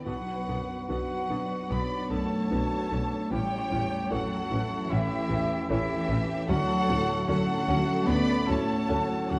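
A rich, lush violin section carries the melody of this moving, sorrowful cinematic passage, played with a rubato feel over a soft, intimate felt-muted upright piano, a focused cello section and a close, smooth studio double bass section. A distant, roomy cor anglais adds a second line, joined in the background by a second violin section with a soft attack and a pure, bright flute ensemble, while a very quiet viola section, a mellow French horn section holding sustained chords and a ringing concert harp playing arpeggios fill out the texture. The chords move from Bm to A7 to Dmaj7 in a dark, warm production with moderate scoring-stage reverb, in a passage cut from a longer piece.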